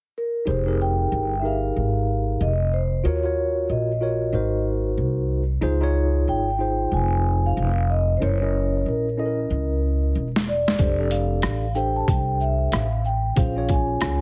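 Jazz-hop in F minor at 93 BPM with a mellow, cool swing, where a ringing soft-mallet vibraphone carries the melody over clean tine electric piano chords and a woody, up-front pizzicato upright bass, until a gritty, overdriven boom bap drum kit with a thumpy kick and high-tuned snare arrives at 10.4 seconds, all heard through a heavily compressed, radio-like sound in this cut from a longer piece.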